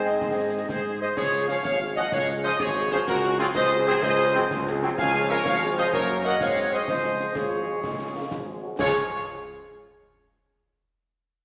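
A proud, festive military-style march for wind band in 6/8 opens with a dark, soft-attacked trumpet section carrying the melody up front beside a mellow, tight woodwind section on a second line, while a distant, shadowy French horn section accompanies in the background, smooth-topped trombones hold sustained chords, a warm tuba anchors the bass, a clear euphonium surfaces only briefly at the start and again at 7.4 seconds, and close, dry concert snare and bass drum with dusky clash cymbals join at 0.1 seconds, the whole band set in a wet scoring stage reverb in this short excerpt from a longer piece.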